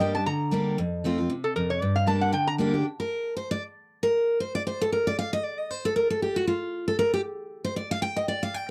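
Bluegrass in G minor at a brisk, swung 232 BPM, this haunting, lonesome fragment opens with a metallic, nasal lap resonator guitar sliding out an up-front melody with a steel bar and fingerpicks over Gm and F chords until 2.5 seconds, while a full-bodied, picked dreadnought steel-string acoustic guitar with audible finger squeak accompanies and then takes its own solo from 2.9 to 8.7 seconds, all captured in a dry, close 1970s-style studio booth.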